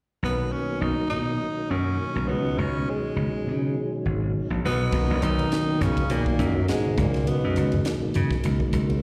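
Slick and funky, this electric jazz fusion excerpt at 102 BPM in swung 4/4 sets a raspy, growling tenor saxophone with slapback echo and a bright, amped slap bass up front over a clean tonewheel organ with key click, slow rotary speaker and chorus vibrato, moving between Bmaj9 and C#9sus4, while a breathy bass clarinet with vibrato adds a second line from 4.7 s, an airy, polished fusion drum kit with a high-tuned snare and punchy kick enters at 4.9 s, and low-tuned, hard-handed congas join in the background at 5.4 s, all heard as a live gig through the venue's PA with small-room ambience and recital hall reverb.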